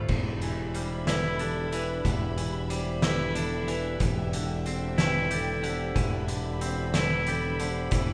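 This melancholic, cinematic post-rock fragment in a slow 6/8 opens at 0.0 seconds with a bowed chamber string section holding sustained chords in the background, its vibrato smooth and even, alongside twangy electric guitar arpeggios that sit up front, clean, picked and compressed. At 0.1 seconds an oversized, low-tuned acoustic drum kit arrives close and forward, its punchy kick, fat snare, hi-hat and crash sounding dark, saturated and gritty against a bright stone room. A growling fingered electric bass enters at the same moment, overdriven and direct, anchoring the low end on a single deep note. Further back, a dry, close-miked vibraphone struck with hard mallets and its motor off adds metallic, ringing arpeggios in a narrow upper range until 7.9 seconds. The whole passage rests on one Em7 chord and is bathed in the lush reverb of a recital hall, with a softened top end that lends the sound a hazy, churchlike depth.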